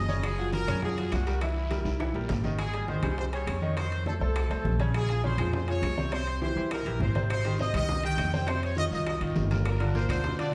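A fast salsa groove at 204 BPM in 4/4 drives this danceable, passionate F minor excerpt cut from a longer piece, with the percussion settling in within the first fraction of a second: ringing, low-tuned congas played with soft hands sit very quiet and compressed, while round bongos played with hard hands, metal-shelled timbales and a raspy guiro stay in the background and woody claves tick along close and quiet. Up front, a growly, thumpy pizzicato upright bass on steel strings anchors the low end, and a brilliant upright piano, intimate and polished with audible action noise, fills in the harmony. A tight, close-miked trumpet section carries the melody with light vibrato and a pop-style edge. A drum fill at 1.9 seconds leads into a new section at 2.6 seconds, where the guiro drops out before returning at 7.3 seconds, as the chords move through Abmaj7, F7 and Bbm9 before landing on Gm7. 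The whole performance sits in a reverberant recital-hall space with a 1.4-second decay, giving it a church or concert-hall glow.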